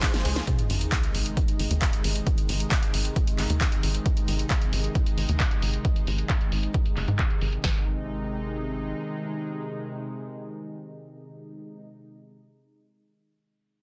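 Euphoric and uplifting, this uplifting trance passage in Ab major moves at 134 BPM in a straight 4/4, cut from a longer piece. A drum fill opens the first half-second, then a very quiet electronic sub drop lands as an impact from 0.5 to 2.3 seconds while the music settles on Ab. A punchy analog drum machine sits up front with a punchy kick and snare in a small room, layered with a techno drum kit of handclaps, hi-hats and a cracking snare, its hats mellowed by a low-pass filter and set in a large room. Underneath, a tight, driving sequencer bass of sawtooth and square waves with a fast, plucky filter attack pumps against the kick before dropping out at 8.9 seconds, after the drums fall away around 7.6 seconds. A lush, thick unison pad of detuned saws, bright and chorused, holds sustained chords throughout with a slow attack and long release, breathing with sidechain pumping and carrying on alone to 11.8 seconds. 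The dense, heavily limited modern master has a digital ambience and audible lossy compression artefacts.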